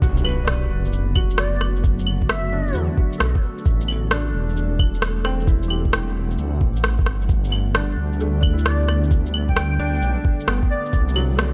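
Swung sixteenths at 132 BPM drive this nocturnal, ghostly future garage excerpt, where a muffled, overdriven kick and up-front electronic shaker, claves and rim click sit over a deep, rumbling detuned saw bass, while a felt-muted upright piano with tape echo and audible action noise and an ethereal pad in the background both pump with the sidechain under chords moving from Bm7 through Am7 and Gadd9 to Cadd9, a background impact opens the first 1.8 seconds, and an airy, dreamy lead with chorus and vibrato appears briefly at 1.4 seconds and again from 8.7 seconds.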